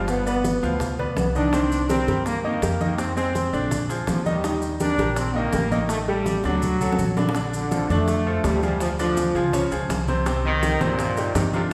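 Danceable and fiery, this salsa excerpt at 165 BPM puts a bright, tight trombone section with light vibrato up front on the melody over a brilliant, woody upright piano, a dark, thumpy pizzicato upright bass, thick-skinned congas in the background, very quiet high-tuned bongos and grainy maracas, all set in a wet recital hall reverb, with a drum fill at 6.4 seconds leading into a new section at 7.4 seconds.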